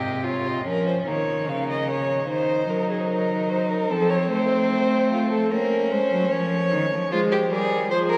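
Set in a straight 4/4 at 74 BPM, this short excerpt from a longer baroque-style fugue for string quartet moves with a solemn yet driving pulse in Bb minor, tuned to A4 = 439 Hz. Two solo violins sit up front. The first carries the melody with expressive vibrato and portamento, and the second traces its own line beneath with a smooth top. A rich, even cello anchors the bass until 7.1 seconds. At that point a single viola takes up the accompaniment, sounding smooth and somewhat distant, and plays to the close at 8.2 seconds. The harmony passes from a rootless Ab through Bbm, Cm7b5/Eb, F and back to Bbm before settling on Fm. A long, wet cathedral reverb lets every bowed note hang in the resonant space of a church or concert hall.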